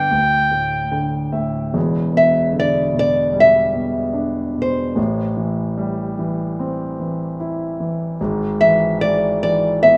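Acoustic folk-pop ballad in E minor at 74 BPM, melancholic and intimate, where a mellow concert grand piano with deep bass carries the accompaniment throughout, a clear, classical-style clarinet sounds a brief up-front solo phrase until 1.4 s, and a small, fingerpicked nylon-string guitar enters at 2.2 s to take the melody over chords moving from Em7 to Am7 and E7/G#, all set in a moderate recital-hall reverb.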